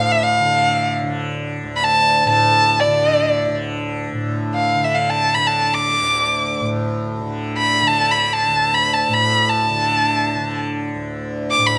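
Solemn and meditative, this fragment of Hindustani classical music unfolds in free time as a rich, expressive bowed violin sings a melody in its upper register, full of vibrato and portamento, over a softly plucked acoustic tanpura drone that is bright, buzzing and shimmering, both heard up front through close, detailed microphones with light reverb.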